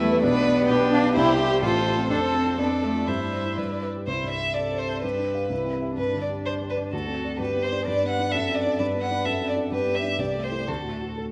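A spirited, lively classical-period movement for piano quintet opens with five players together: a rich, smoothly even first violin with vibrato carries the melody up front, a dark, expressive cello with portamento shapes a second line, and a second violin with portamento adds another line. Beneath them, a mellow baby grand piano with long sustain and an intimate, airy-bowed viola in the background supply the accompaniment. The viola and second violin stop at about 3.8 s and 3.9 s, leaving violin, cello and piano to carry a new section with a rubato feel, all set in a wet concert-hall reverb, in a passage cut from a longer piece.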